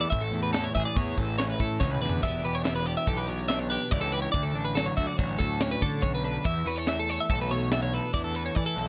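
A bright, twangy twelve-string electric guitar picks intricate arpeggios over a second, compressed twelve-string laying down a chorus-tinged accompaniment in this wistful math rock and midwest emo piece at 142 BPM in 5/4, alongside a fuzzy, overdriven picked bass and an airy, polished fusion kit with a high-tuned snare, punchy kick and a fill at 1.8 seconds, all moving through Amaj7, Em7, Dmaj7 and E7sus4 in a dry room, in a short passage cut from a longer work.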